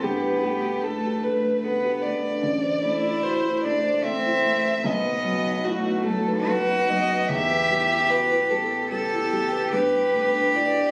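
All four parts sound together from the opening moment of this melancholic, reflective neoclassical piece for piano and strings, cut from a longer work and set in E minor at 74 BPM in a rubato 3/4. A single dark violin carries the melody up front, bowed sul tasto with a soft attack, light vibrato and a smooth, intimate top. Beneath it a lone cello plays a second line, rich and pure with a floating quality, also bowed sul tasto and close to the listener. A woody, boxy upright piano supplies mellow accompaniment across a broad range, while a very quiet warbling tape-like pad holds sustained chords with a nostalgic, lo-fi, vintage haze of chorus and its own reverb. The harmony moves from Gadd9 through Am and B to Em, returning to Gadd9 at 9.7 seconds, and the whole recital-hall sound is wet with a 1.5-second reverb, as if captured on a phone in the room.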